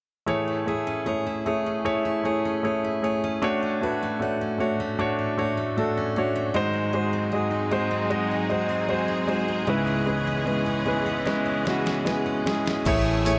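An intimate concert grand piano with audible action noise and deep bass sits up front in this emotional, hopeful pop ballad excerpt in A major at 76 BPM, moving through Amaj7, Dmaj7/A, G#7 and C#m7 alongside bright, full-bodied picked arpeggios from a jumbo steel-string acoustic guitar. A lush, close string section with vibrato joins on sustained chords at 6.5 seconds, and a gritty, tape-warm sampler-style drum kit with a thumpy kick and fat snare plays a fill from 11.3 seconds. A dark, round fretless electric bass arrives at 12.9 seconds as the harmony returns to Amaj7, all set in light reverb and small room ambience.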